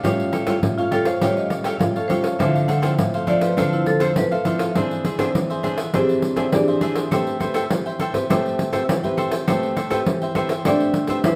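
A wet, large-studio reverb surrounds this recording of a band playing live together in one room. It is a bittersweet yet lively samba and choro passage in A minor at 102 BPM in a straight 4/4, cut from a longer piece. A marimba played with medium hard mallets carries the melody, its rosewood bars sounding woody and percussive with a boxy, small-room character. It enters at 0.8 seconds, pauses at 7.1 seconds and returns at 10.7 seconds. Underneath, a thumb-plucked classical nylon-string guitar sits up front with audible finger squeak, while a picked cavaquinho adds crisp, acoustic accompaniment higher up, and a jingly pandeiro, close and dry and struck with hard hands, stands forward in the mix. The harmony moves through Aaug7, Dm9, E7alt and Am9, giving the short passage its wistful color.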